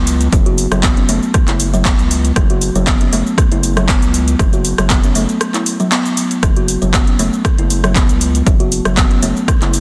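An overdriven, punchy electronic kick drives this spiritual afro house excerpt at 118 BPM in F# minor, with a lightly swung groove of cabasa, handclaps, metallic hi-hats and rim clicks, a round, deep analog bass pumping under the sidechain, and a woody, softly plucked kalimba tracing arpeggios through tape echo, all in light reverb and a dense, heavily limited master.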